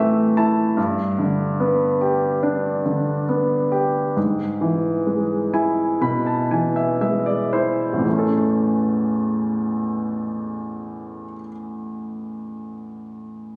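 A clear, up-front baby grand piano carries this heartbroken, melancholic pop fragment at a slow 56-73 BPM in straight 4/4, moving through Am, G and E/G# before landing on A at 8.1 seconds, with fills at the opening and from 5.1 to 8.1 seconds, a slowing of pace from 0.8 to 8.1 seconds, and a phone recording in the room that wraps the polished tone in concert hall reverb.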